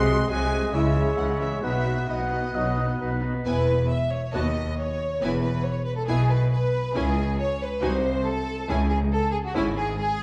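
A dark, moderately reverberant scoring-stage sound frames this spirited fragment of a quick classical-period movement for symphony orchestra, moving at 138 BPM in 4/4 with a rubato feel in E major. The violins carry the melody with rich, smooth vibrato, while a second violin section sits up front with a focused line. The violas fill in the background, the distant, clear cellos and the soft-attacked double basses, with their expressive portamento, anchor the bass, and all of these strings continue to about 10 seconds. In the opening bars the winds add their own lines: an airy, hollow silver flute high in the background, a warm oboe, a shadowy, roomy clarinet and a mellow bassoon, all falling away by 3.5 seconds. Very quiet, distant French horns hold sustained chords until 2.7 seconds, and from 3.5 seconds the strings carry the lively second section alone, moving between E major, C# minor and G#7 harmonies.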